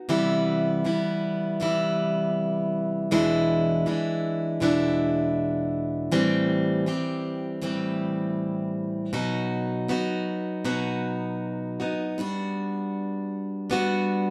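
A picked, plugged-in steel-string acoustic guitar carries this short pop excerpt alone, its woody, full-bodied dreadnought tone colored by the worn character of old strings and placed up front. The mood is longing and emotional, moving at an unhurried 79 BPM in a straight 4/4 feel, with the guitar ranging from E2 to G4. The harmony drifts through Cmaj7, E7, Am7 and B before settling on Gmaj7 near 12.2 seconds, lending the passage a wistful, searching quality. A moderate large-studio reverb, about 1.1 seconds long, gives the sound a roomy, live-in-one-space feel. The clip runs just over 14 seconds and is cut from a longer piece.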